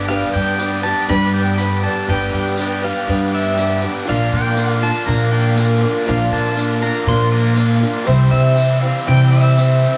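A straight 4/4 pulse at 120 BPM drives this dusty, wistful folk rock and heartland rock excerpt through G, Bb and C, with a growly, woody upright bass up front, a boxy picked archtop acoustic guitar with finger squeak, a bright overdriven double-tracked garage guitar riff, a clean, compressed pedal steel melody with slide, volume swells and slapback echo, jingly tambourine from 0.6 seconds, a very quiet flute-like tonewheel organ on slow rotary speaker and an intimate vintage grand piano, set in light small-room reverb.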